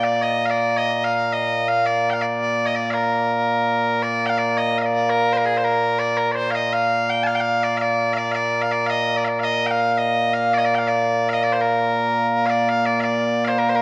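Loud, piercing bagpipes open alone at once, carrying a proud, ceremonial Scottish pipe tune in 6/8 at 111 beats per minute in B-flat major, their continuous tone sitting bright and up front. A moderate stage reverb surrounds the pipes, and the sound has the worn, warbling pitch drift of old cassette tape. The opening phrase repeats before a new strain begins at 12.7 seconds, and the passage breaks off at 13.8 seconds as part of a longer piece.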